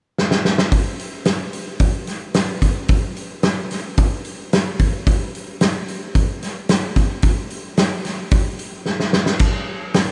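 A lightly reverberant, roomy recording with a dark, rolled-off top opens this short rock excerpt, its melancholic, hazy mood carried entirely by a loose indie drum kit in a straight 4/4. The acoustic kit pairs a punchy kick and medium-tuned snare with hi-hat, crash and dusky cymbals. A fill at 0.2 seconds launches the groove, and another at 8.9 seconds rounds it off before the drums stop at 10.1 seconds.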